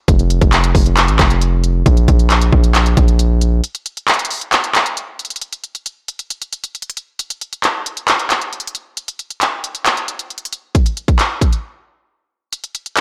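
A heavy, saturated, distorted 808-style bass with a fast-attack, decaying sine tone and a noise layer opens this melancholic, menacing half-time trap cut at 135 BPM alongside an up-front electronic kit of hard-clipped kick, crisp hi-hats and handclaps with a tape-warm edge; the bass drops out at 3.6 seconds while the drums carry on through a blown-out, overdriven mix with light digital reverb until the kick falls silent at 12.5 seconds.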